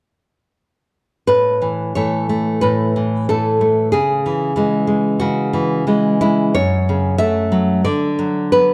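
A romantic solo classical guitar piece, nostalgic and sunny in mood, with a bright, fingerpicked nylon-string guitar sitting up front in a dark production, moving freely in rubato through A, C#m, F#m and Bm/D from 1.3 to 8.7 seconds inside a moderate scoring-stage reverb, in a short cut from a longer work.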